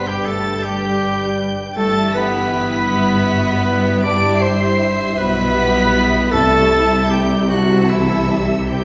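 In a reverberant hall, a lush orchestral passage from a longer cinematic piece unfolds, moving and hopeful, its 6/8 pulse stretched by rubato. A high violin section carries the melody with warm vibrato, while airy flutes, a bright oboe, a distant clarinet and a gentler second violin line sit behind it, and punchy French horns hold sustained chords over the viola section, a dark felt-muted upright piano and faint, ringing harp arpeggios. Cellos and double basses anchor the bass as the harmony moves from G through Emadd9/G to C at 6.3 seconds.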